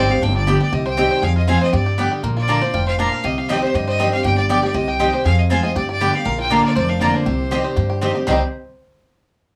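Haunting and driving, this short bluegrass passage in C minor races along at 238 BPM in a straight 4/4, cut from a longer piece. A clear, biting fiddle with light vibrato carries the melody up high, while a twangy, fingerpicked banjo shares the melodic line below it. A bright, full-bodied steel-string guitar picks out the accompaniment, and a round, double-strung mandolin punctuates with stabs. Underneath, a woody, thumpy upright bass with gut strings plucks a dark foundation. The chords cycle through G, C minor, F minor and B-flat, repeating the progression over about 8.4 seconds, with moderate small-room reverb surrounding the ensemble.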